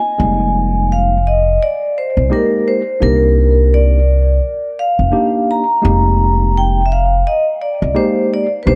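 Ringing, metallic vibraphone with medium-hard mallets and a medium motor vibrato carries the melody through dub echo in this nocturnal, mellow hip hop excerpt at 85 BPM in F dorian, swung on the 16ths, joined at 0.2 seconds by a worn, slightly out-of-tune, lightly overdriven tine electric piano accompanying through its built-in speakers and a woody, pizzicato upright bass on steel strings, all up front in a lightly reverberant, echo-heavy mix moving from Fm11 to Cm9 and back.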